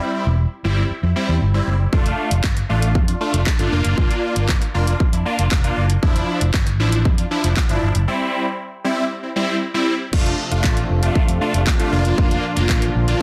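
A straight 4/4 groove at 117 BPM drives this carefree, upbeat dance-pop clip in F major, cut from a longer piece. A big, bold polysynth opens the track with fat, detuned sawtooth chords that carry chorus, phaser and sidechain pumping, sitting up front beside a punchy fingered electric bass that pumps along in the low register. At 1.9 seconds a layered house drum kit arrives with a hard-hitting kick, handclaps, hi-hat and crash cymbal, its tape-tinged sound placed close and forward. The harmony moves through chords such as F6, Bb/F and Dmadd9/F, and a short break at 8.1 seconds leads into a new section. From 10.1 seconds a soft, mellow supersaw adds smooth sustained chords in the background, treated with phaser and pumping. Light digital reverb surrounds a dense, heavily limited modern master.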